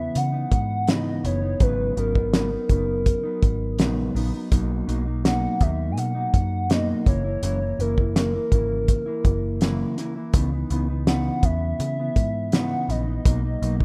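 This laid-back, nostalgic bedroom pop excerpt opens at once with a hollow, woody clarinet-like synth lead carrying the melody, softened by analog chorus and vibrato. Beneath it, a mellow electric guitar plays dark, clean, fingered accompaniment with subtle chorus and a vibrato effect, while a vintage muted picked bass sits low with a round, punchy, foam-muted tone. At 0.2 s a cloth-damped drum kit joins on kick, snare and hi-hat, thuddy and gritty, with a fat snare, a tight kick and a rolled-off top placed up front in the mix. The harmony drifts through C#m9, G#m11, Bmaj7 and F#7 before returning to C#m9 and settling on Bmaj7 at 13.3 s. Light reverb and small room ambience give the whole a rough home demo character.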